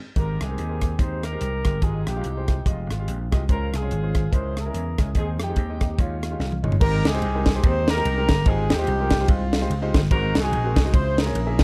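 Jubilant yet reverent, this swung, uptempo gospel excerpt sets a mellow horn section carrying the melody with light vibrato over clear grand piano accompaniment, a growly, punchy slap bass and a tight, dry funk drum kit with bright cymbals and a high-tuned snare, opening on a band accent and moving through rich extended chords until a drum fill at 6.4 seconds leads into a new section at 6.8 seconds, the dark production touched by light reverb.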